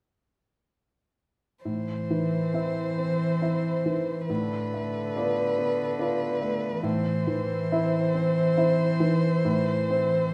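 A bowed cello enters first at 1.6 s with an airy line played sul tasto, its light vibrato and soft attack giving the second voice an intimate closeness. Almost at once, a violin and a clear grand piano join, drawn from a slow romantic movement for piano quartet in A minor at 69 BPM in 3/4, with uneven, rubato beats and tuning at A4 = 438 Hz. The solo violin carries the melody up front in a narrow upper register, its warm tone shaped by expressive vibrato, soft attacks and gliding portamento. The piano supplies a polished, present accompaniment spanning from deep bass to the treble, its notes ringing with long sustain, while the harmony moves from A minor to a half-diminished chord over an A bass at 4.3 s and back to A minor. A wet recital hall reverb surrounds the trio, lending the elegiac, yearning passage a sense of space before this fragment of a longer piece is cut off.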